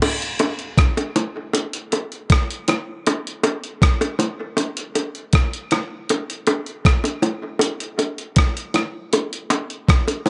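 Smooth and longing, this short reggae cut from a longer piece moves at an unhurried, straight 4/4 pace with only drums and percussion. A crisp 8-bit digital drum machine sits up front with a thumpy kick, rim click, hi-hat and crash cymbal, its sampler-style sound re-recorded in a small room, while tight, high-tuned vintage bongos, also up front, trail a dub echo. Light reverb and a digital ambience frame the mix, and its top end is softened.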